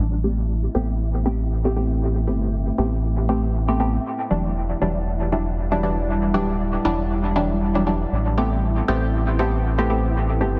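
Cavernous and hazy, this dub techno fragment moves at 118 BPM in A minor with a light swing, shifting between Am9 and Em9 chords. A round analog bass holds the low end up front from the start, joined at 0.2 seconds by muted, detuned dub chord stabs that carry chorus, phaser, a filter sweep and dub echo. An airy, breathy wind-like noise texture drifts in at 0.5 seconds, and a moody, dark ambient pad with chorus and its own reverb follows at 1.5 seconds, both in the background, all set in an echo-chamber space and a dense, heavily limited master.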